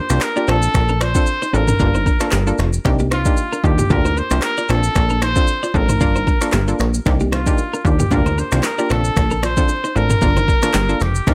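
A 114 BPM afrobeats groove in 4/4 with a light 16th-note swing carries this sultry, hypnotic excerpt, where a clear trumpet with light vibrato and scooped notes sings the melody through digital delay over a hollow, bouncy square pluck with chorus, a twangy clean electric guitar riff, a punchy, funky analog bass and an up-front deep house kit of deep kick, snaps, claps, rim clicks, shaker and toms, while very quiet congas and bongos join at 7.1 seconds, all cycling through Bbmaj9, Gm7, Cm7 and Ebmaj7 in a light reverb.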